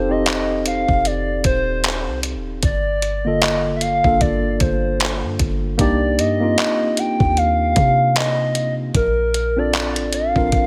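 A slow 76 BPM groove in 4/4 with a 16th-note swing anchors this moody, sensual contemporary R&B fragment in G minor, cut from a longer piece, where a hollow, woody clarinet-like synth lead with chorus and vibrato carries the melody up front over a mellow tine electric piano, a deep, boomy 808-style bass and a detuned 8-bit drum machine of thumpy kick, hi-hat and handclaps entering at 0.3 seconds, all under light reverb as the chords move from F7 to Gm7, Cm7 and Bbmaj7.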